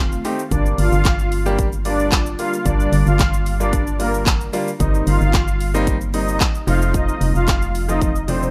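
Confident yet bittersweet, this dance-pop excerpt in G minor moves at 112 BPM in straight 4/4. A filtered supersaw swell carries an evolving melody through digital delay over clear baby grand piano accompaniment, a hollow, percussive organ-like FM bass and a punchy, up-front electronic pop drum kit of kick, bright hats, handclaps, shaker and toms, while a very quiet ethereal pad hangs beneath. The bass, piano and supersaw pump with sidechain, the harmony moves from F7 through Gm7 and Cm7/G back to F7, and a drum fill arrives at 8.0 seconds in a dry, rough home demo mix.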